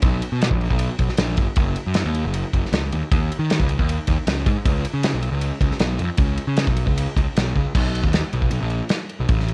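Math rock with a midwest emo tint, this short excerpt moves at 155 BPM in a straight 4/4 and carries a wistful, intricate mood. A picked electric bass with overdriven fuzz sits up front, its tone warm, direct and amped as it ranges from F#1 to D#3. Beside it, an acoustic studio drum kit sounds punchy and mid-forward, with kick, a medium-tuned snare, ride and crash cymbals all close and present. Both parts play throughout, and a drum fill at 7.6 seconds leads into a new section at 7.7 seconds. The dry recording has a worn, warbling cassette character, its pitch drifting like old tape, and the fragment is cut from a longer piece.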